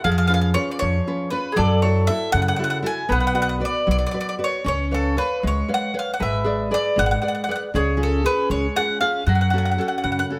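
Close, detailed microphones sit inside a moderate recital-hall reverb for this passionate, wistful excerpt of an Italian folk serenade, swaying in a rubato 6/8 at 78 BPM in dotted quarters, tuned to A4 = 445 Hz. Up front, a mellow, woody picked mandolin carries the melody, while a second mandolin adds a round, double-string line in the background, and a full-bodied nylon-string guitar fingerpicks the accompaniment with audible finger squeak. A growly, thumpy pizzicato upright bass anchors the harmony as it moves from C#7/E# through F#m7, Bm and G#dim before settling on F#m near 9.3 seconds.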